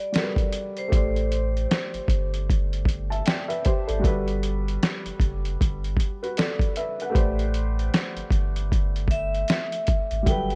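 A dry, intimate lo-fi hip hop fragment cut from a longer piece, where muffled, overdriven sampler-style drums with a thumpy kick sit up front beside a soft felt-muted upright piano carrying cassette-tape grain, a deep sine-like sub bass with an added octave enters at 0.9 seconds, and a metallic, ringing hard-mallet vibraphone with slow motor vibrato and tape echo sings a brief melody that drops out at 2.3 seconds and returns at 9.1 seconds, all in a mellow, nostalgic mood over a gently swung feel.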